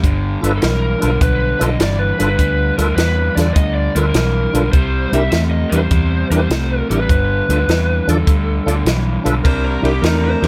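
A lo-fi lead guitar through a small cranked amp carries the melody from 0.6 s in this rollicking, swaggering electric blues shuffle at 102 BPM, cut from a longer piece, riding over a bright, crunchy guitar riff, a round, foam-muted bass and a dry cocktail drum kit with a punchy kick and high-tuned snare up front, while a full tonewheel organ with chorus vibrato and slow rotary speaker joins at 0.4 s, the chords shift between G9 and C9, and a smooth-topped horn section adds jazz-style stabs from 9.4 s as the lead breaks into a solo under light reverb.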